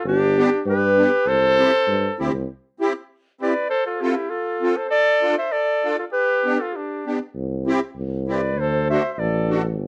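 Close, detailed microphones in a moderately reverberant studio capture this bouncy, jolly alpine folk dance tune at 99 BPM in 2/4, with a swung feel in C major. A mellow clarinet with plate reverb carries the melody up front, a clear trumpet plays a smooth second line beneath it, and a reedy, shimmering musette accordion sits dry and full in the accompaniment. A roomy tuba with vibrato supplies the bass, stopping at 2.5 seconds and returning at 7.3 seconds, while the harmony moves through G, C, F, Dm and D.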